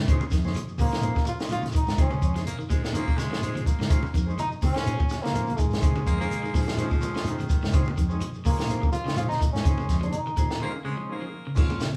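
A swung sixteenth-note groove at 125 BPM drives this funky, defiant afrobeat excerpt in Bb minor, anchored on a Bbm11 chord, with a dry, up-front cocktail drum kit of punchy kick, high-tuned snare and dark cymbals, backed by grainy shekere, very quiet low-tuned congas and a round, fingered electric bass. A brilliant, forceful trombone carries the melody from 0.8 seconds with light vibrato and a distant, roomy sound, while a raspy, gritty baritone saxophone plays a close-miked second line. Slightly broken-up guitar arpeggios, dark clean guitar stabs and a buzzy vintage combo organ fill in behind, all in a live small-room ambience with moderate studio reverb before a break at 10.6 seconds.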